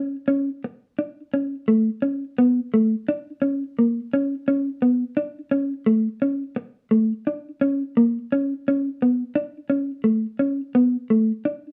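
Danceable and carefree, this short highlife passage rolls along at 115 BPM in a 12/8 lilt with a straight feel. A mellow electric guitar carries a solo line from 0.0 to 11.7 seconds, its clean, dark, fingered tone sitting up front in the mix. The part stays within a narrow span from A3 to D4, keeping the line compact and relaxed. A brief opening phrase gives way at 2.4 seconds to a longer second section that runs to the cut. Light reverb and the sound of a band playing live in one room lend the recording an easy, natural air.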